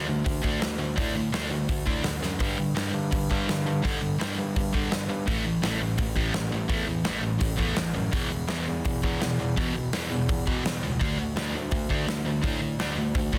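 Dry and densely limited, this 13.4-second excerpt of rowdy, rebellious punk rock charges ahead at 168 BPM in a straight 4/4, with a sludgy, overdriven, double-tracked electric guitar riffing up front through power chords on D, G, A and E. A barky, bright tine electric piano carries the bass line cleanly beneath it, while a big acoustic rock kit with a punchy kick and medium-tuned snare comes in at 0.3 seconds and throws in a fill at 2.2 seconds.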